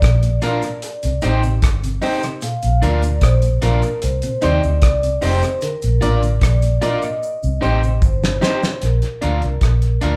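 Roots reggae at 75 BPM in Bb major, warm and uplifting, where a dark, foam-muted vintage fingered bass and a cloth-damped, thuddy drum kit with a fat snare sit up front beneath a soft-mallet vibraphone melody with slow motor vibrato, while a slightly broken-up electric guitar, clear grand piano stabs with audible action noise, a mellow tonewheel organ with chorus vibrato and slow rotary speaker, a very quiet clean guitar playing arpeggios until 6.9 seconds, and a faint compressed cabasa with tape echo fill out a live-room band sound in moderate studio reverb, with a drum fill from 7.2 to 8.8 seconds before the chords settle back on Bb in this short cut from a longer piece.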